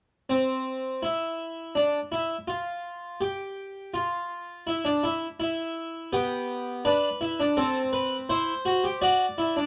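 In a straight 4/4 at 82 BPM, this joyful, elegant excerpt of a baroque-style three-part fugue features a solo French-style harpsichord from 0.3 to 9.7 seconds: airy, plucked and brilliant with the full sound of three sets of strings, it sits up front under close, detailed microphones and light reverb, ranging from B3 to D5 as the harmony moves from an opening free of chords through G/B, Am7/C and D.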